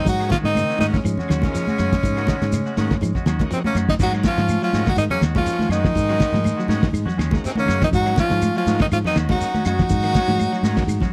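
Afrobeat with a joyful, driving swing, where a bright, punchy tenor saxophone carries the melody up front over a distant, roomy trumpet and a tight trombone section on second lines, twangy slightly broken-up guitar arpeggios, scooped clean guitar stabs, a round fingered bass, a muffled cloth-damped drum kit with a fat snare, high-tuned congas, a grainy shekere, faint woody claves and a shouting tonewheel organ with overdrive and slow rotary speaker, all caught in a dry, close, small-room 1970s-style sound.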